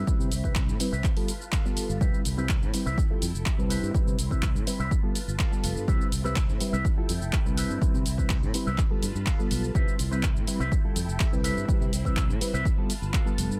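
Joyful and feel-good, this filtered disco house excerpt moves at 124 BPM in C major, cycling through Cmaj7, G9 and Fmaj9 chords under a filter sweep that runs its full 13.6 seconds. A reedy, lightly overdriven electric piano with fast tremolo and phaser carries the accompaniment over swirling, vintage string-machine chords, while a twangy envelope-filtered guitar with 12-bit sampler grit plays a riff and a growly fingered bass, all of these pumping against the sidechain. An up-front punchy electronic kick and an analog drum machine with cabasa, handclaps and hi-hat drive the groove in a dry mix, and a clean electric guitar fill appears from 5.2 to 5.9 seconds.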